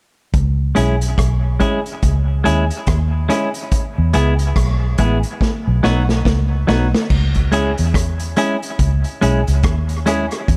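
A light, small-room reverb and echo-heavy mix frame this hypnotic, deep dub reggae excerpt, where a dark, foam-muted, round fingered bass and a punchy, rolled-off vintage drum kit with dark cymbals and rim clicks sit up front from 0.3 seconds, joined at 0.8 seconds by a clean, picked, compressed electric guitar trailing dub echo, with a drum fill from 5.4 seconds leading the C# minor, E and B chord cycle back to its start at 7.1 seconds.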